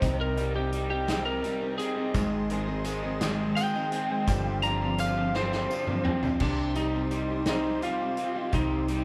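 A moderate hall reverb gives this short cut from a longer piece a spacious, slightly distant air, suited to its wistful, dusty mood at the meeting point of folk rock and heartland rock in a straight 6/8. Up front, a bright, twangy, lightly driven lead guitar carries the melody as a solo through the first 6.4 seconds, over a woody dreadnought acoustic guitar with old strings picking the accompaniment and a double-tracked, crunchy overdriven guitar holding down a low riff. A round, punchy hollow-body bass anchors the bottom, while a roomy, loose indie drum kit with a tight kick plays throughout and adds a fill from 5.3 to 6.4 seconds. Deep in the background, a reedy musette accordion shimmers with sustained chords, and a jingly, vintage-sounding tambourine appears only from 2.1 to 6.3 seconds. The harmony moves from Cm through Ab to G7sus4 before settling back on Cm as a new section begins.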